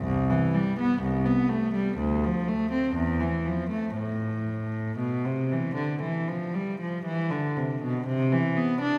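A single bowed cello with a rich, reedy gut-string tone sounds close and up front from the opening moment, playing a flowing, serene baroque-style suite movement in A minor at about 58-63 BPM with free rubato, ranging from C2 to D4 for 9 seconds within the long, wet reverb of a church, cut from a longer piece.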